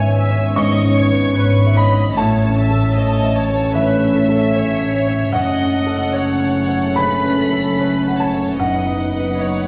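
Moving and full of longing, this cinematic film-score fragment unfolds at a rubato 75 BPM in F# dorian, with a dark, sul tasto violin section carrying the melody softly in the background while a rich second violin section traces a higher line with light vibrato. A smooth, vintage grand piano and a French horn section holding sustained chords are the loudest parts, while a pure, distant viola section adds accompaniment and dark cellos and a floating double bass section anchor the low end. The ensemble is heard from further back in a wet recital hall, its reverb lingering for 1.4 seconds.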